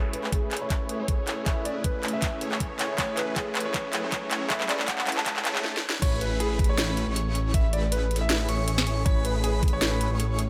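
Playful and euphoric, this future bass passage moves at 158 BPM in a half-time feel with a light swing, centered on A major and opening on an Amaj9 chord. For the first 6.0 seconds a build-up unfolds: an intimate concert grand piano with audible action noise carries the melody through sidechain pumping, a low-pass filter sweep and dub echo, while huge, lush supersaw chords play a riff coloured by phaser and a cassette-tape character. A clean tine electric piano sits in the background with dub echo, a very quiet, ethereal pad holds sustained chords, and a riser climbs beneath a drum fill. The trap kit's sharp snare, metallic hats, handclaps and crash, together with a layered, knocking electronic kick, sit up front. At 6.0 seconds the drop arrives, bringing a thick, saturated detuned saw bass on a low A and a soft, dreamy lead playing high arpeggios with chorus, phaser and vibrato in the background. 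Light digital ambience and sidechain pumping on several parts give the mix its breathing, bright lift.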